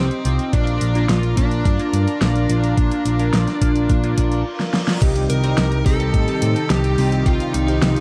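An up-front, round hollow-body picked electric bass anchors this nocturnal, moody synthwave excerpt at 107 BPM in C dorian, moving between Cm and Bb under a dark, overdriven lead guitar melody with digital delay, a lush detuned unison pad with sidechain pumping, and mellow phased polysynth stabs sitting in the background. A layered, overdriven pop kit with a fat snare, warm hats and crash enters at 0.1 seconds, and a thumpy, tape-tinged electronic kick joins at 0.5 seconds. A reverse cymbal rises into a short break and drum fill ending in a band accent at 4.9 seconds, after which a shimmering vintage string-machine violin line enters at 5.3 seconds, all within a dark production with light reverb.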